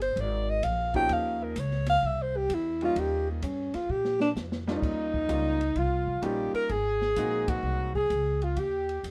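A relaxed, swinging 129 BPM in 4/4 drives this mellow small-group jazz passage, where a subtoned alto saxophone with light vibrato and scooped notes carries the melody over a woody, growly pizzicato upright bass placed up front and a dark, boomy small-room drum kit with dark cymbals and a rolled-off top, while a clear upright piano with audible action noise joins at 0.9 s, a bright, punchy trumpet adds a forceful second line from 4.7 s near the end of a drum fill, and the band hits a shared accent at 7.4 s, all in light reverb.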